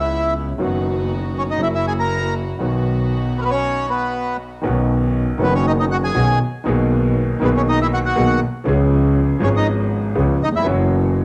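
A rubato 4/4 pulse around 120 BPM gives this short tango fragment in B major a playful yet passionate sway, with a break at 3.6 seconds before the opening phrase returns. Up front, a reedy, dark bandoneon carries the melody until 10.7 seconds, while a warm concert grand piano with deep bass and a smooth, vintage tone supplies the accompaniment. A bowed double bass, played by one player, anchors the low end with a smooth, even sound and vibrato, sitting close and slightly louder than the rest. A rich chamber string section adds earthy, lightly vibrato stabs further back in the mix, dropping out at 4.5 seconds. The bandoneon, piano and strings carry a cassette-tape coloring, and the whole plays in a home-recorded studio space with light reverb, moving from C#m7 through F#7 to B and later Badd9 before ending unresolved on F#7sus4.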